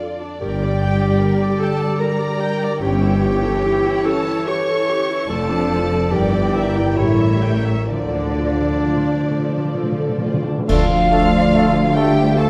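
A lyrical, tender slow movement for symphony orchestra opens at 0.0 seconds with a rich violin section carrying the melody over bowed violas and the ringing, fingerpicked arpeggios of a concert harp. Almost at once a clear clarinet and a more distant, focused second violin line join, while double basses and a lush, vibrato-laden cello section settle into the bass beneath them. In D minor and 3/4 time, the music moves at roughly 63-77 BPM with a flexible rubato, its harmony passing from Gm through A7b9 to land on Dm. At 7.9 seconds, timpani with calf heads and medium mallets play a fill, leading to a full band accent at 10.7 seconds, where dark clash cymbals and a concert bass drum strike, airy flutes, a soft oboe and a mellow bassoon enter, and a French horn section holds chords over a very quiet tuba. The whole passage sits in a recital hall reverb with a dark production, and it is a short section taken from a longer piece.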